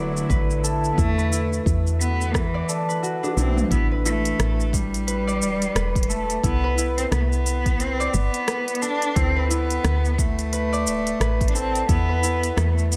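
A rich, focused cello carries the melody up front with vibrato and tape echo, over fingerpicked, ringing concert harp arpeggios that share the echo and a woody, round FM bass pumping with the sidechain, in an earthy organic downtempo groove at 88 BPM with a swung 16th feel. A tense, string-like drone, itself pumping and bathed in built-in reverb, hangs in the background with a very quiet, breathy wind-like noise texture until 3.7 seconds, just as a drum fill covers a brief gap in the deep electronic kick. The organic electronic kit adds smooth hats, rim click, shaker and toms, both drum parts tape-tinged and re-recorded in a large room, while chords move from D and Esus2 through Cmaj7 in this excerpt from a longer piece.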